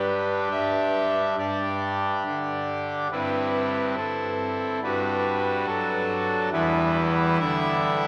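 Drenched in a long cathedral reverb with vinyl crackle, this brief excerpt of a majestic, reverent classical chorale in G major features a solo pipe organ on its trumpet stop, brassy and bright with baroque voicing and a distinct chiff, sitting up front as it moves at a rubato 70 BPM in 4/4 through G5, Am7/G, D/G and Em across 8.1 seconds.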